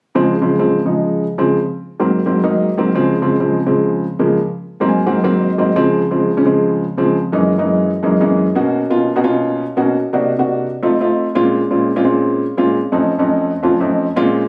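Captured on a phone in a club-like room with moderate reverb, this sophisticated, fiery jazz fragment features a solo grand piano, dark and mellow with audible action noise and a short sustain, sitting up front as it moves through rich ninth and seventh chords in a straight 4/4 and slips in a fill from 4.7 to 5.8 seconds before a second section begins at 5.8 seconds.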